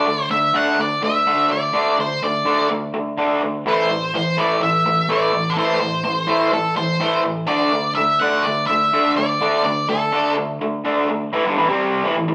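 Driving and brooding, this rock excerpt moves at 125 BPM in a straight 4/4, cut from a longer piece. An octave-fuzz lead guitar carries the melody up front, its dark, distorted tone picked between A4 and F#5 until it stops at 10.3 seconds. Beneath it, a raw garage guitar plays the riff from G2 to D4, bright and overdriven, picked and double-tracked, and stays up front through 12.3 seconds. The chords move from D5 to Am, back to D5, and land on Am at 11.3 seconds as a brief closing section begins. The band sounds as if it is playing live in one large studio room, with moderate reverb giving the guitars some air.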